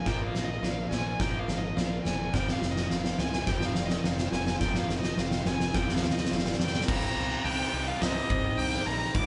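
A straight 4/4 pulse at 106 BPM drives this melancholic, brooding post-rock passage in C minor, cut from a longer piece, with an oversized, low-tuned drum kit up front: a boomy kick, fat snare, hi-hat and crash cymbal in a pumping big room play a drum fill through a build-up that lasts until 6.9 seconds. A bright distorted electric guitar riff sits in the background over a punchy fuzz-overdriven picked bass, while a dark, veiled muted violin carries the melody. A very quiet, icy glass pad holds sustained chords, and a ringing vibraphone and a barely audible twangy twelve-string guitar play arpeggios; the twelve-string stops at 6.9 seconds as the harmony moves from Bb and Fsus2 to Cm7, all in a moderate large-studio reverb.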